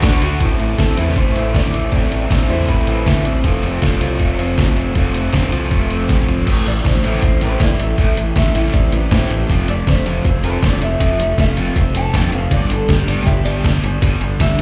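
Heard through a club PA with a dulled top end and little reverb, this bittersweet, cool indie rock excerpt in A minor drives along at 159 BPM: a muffled, pitched-down trip hop sampler-style kit with a thumpy kick sits up front over a growling, punchy overdriven fingered bass, while a dark overdriven guitar and a raw garage guitar with lush chorus and slapback echo churn out riffs, a bright, twangy guitar through a small old amp with phaser carries the melody, a clean solo arrives at 6.5 seconds after a drum fill, and a glassy synth bell adds brief crystalline touches in the background.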